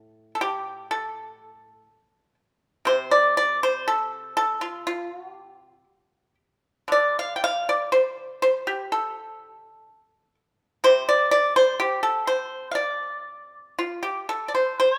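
Rubato phrasing in a loose 2/4 gives this Chinese traditional solo a longing, contemplative feel. A single pipa, plucked with fingerpicks and placed up front, carries the whole passage with a bright, dry, percussive tone across its span from low to high register. The recital hall adds moderate reverb around it in this passage cut from a longer piece.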